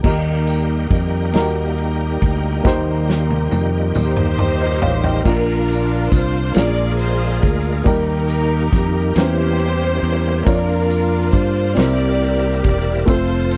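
In a slow, straight 6/8 at 46 BPM, this hopeful, reverent gospel excerpt opens on Eb with a dark baby grand piano, round fingered electric bass, punchy natural country drum kit, jingly tambourine, a shouting tonewheel organ on fast rotary speaker with overdrive and chorus vibrato, and clear background strings that stop at 5.2 s, while lush, up-front strings take the melody from 4.0 s and a drum fill from 2.6 s leads into Bb major at 5.3 s, moving through Bb7, Edim7 and C7 in a dry, close 1970s-style sound.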